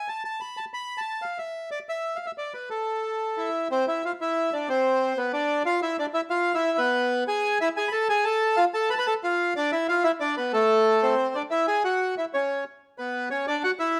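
Dramatic and melancholic, this short excerpt from a longer tango features a lone bandoneon playing in a flexible, rubato three-beat feel. The instrument sits up front with a reedy, warm voice, ranging from A3 up to B5 across its 14 seconds. It opens with an unaccompanied phrase before a harmonic progression takes shape at 3.7 seconds, moving through chords such as Cadd9, Dmadd9, E and F before settling on A minor. A new section begins at 11.5 seconds, shifting to C#madd11 and Bsus2 and ending on a rootless B minor. A moderate studio reverb with a one-second tail gives the bandoneon a sense of space in a large room.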